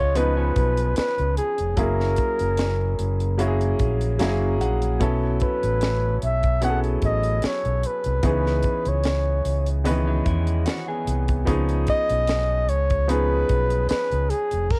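A dry, close home-cassette sound frames this smooth, cinematic slice of lush 1970s-style soul, where an up-front flugelhorn with vibrato carries the melody over clear, intimate baby grand piano (with a fill from 3.8 to 5.0 seconds), an overdriven fingered electric bass, a tight funk drum kit with bright cymbals and a high-tuned snare, and brief slightly broken-up riffs from an electric guitar through a small old amp at 0.0 and 10.1 seconds.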